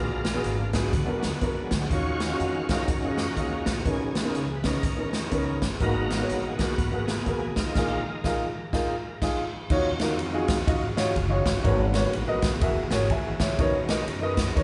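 A bright, shouting tonewheel organ with slow rotary speaker, light overdrive and chorus vibrato takes a solo over woody, intimate upright piano and growly pizzicato upright bass from the start, joined at 0.2 seconds by a punchy, up-front big-band drum kit with dark cymbals, in this solemn, fervent uptempo gospel piece in Eb minor at 123 BPM with a swung feel, where the band hits an accent from 7.8 to 9.7 seconds before moving into a new section, all set in a large, reverberant room with a live-band sound.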